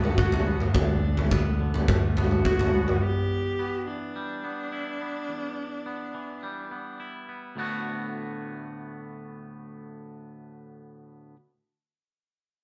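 This is a hopeful, cinematic post-rock piece at 105 BPM in 4/4 with a straight feel, cut from a longer piece and set in D major. A bowed cello carries the melody between D4 and G4, rich and focused with vibrato from a single player, and a slapback echo trails its line until it falls away at 7.0 seconds. Beneath it, a clean, twangy electric guitar plays fingered arpeggios ranging from D2 to F#4 and continues to the end at 11.4 seconds. For the opening 3.0 seconds, a growling fingered electric bass holds D2 with punchy overdrive, while a big acoustic rock kit sits up front with kick and toms, the kick landing with natural punch. The harmony moves from D6 to Em7 at the point where the bass and drums drop out, then returns to D6. The band plays live in one room with a moderate studio reverb around them.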